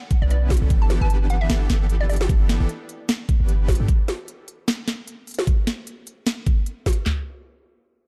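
A deep, boomy 808-style bass with tube saturation and sidechain pumping anchors this lush, euphoric half-time future bass drop, cut from a longer piece, beside two layers of overdriven, up-front trap drums (a knocking kick, sharp snare, handclaps, toms and crisp hi-hats) that run to about 7.2 s, while a fat, detuned sawtooth polysynth riff with subtle chorus and a hollow, bouncy square-wave pluck melody with chorus and dub echo both pulse with the sidechain pumping before the bass and polysynth stop at 3.9 s, in a dark, dry production.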